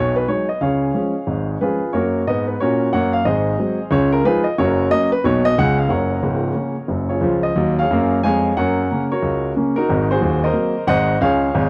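A dry, close recording with a small room's ambience and a 1970s studio character frames this playful, swinging stride jazz piece, cut from a longer performance. A lone baby grand piano carries everything, its tone warm and natural with long sustain, sitting up front and spanning C#1 to Ab5. After a first passage of quickly shifting chords, a new section begins at 7.2 seconds with changes that come less often, running until the clip ends at 11.7 seconds.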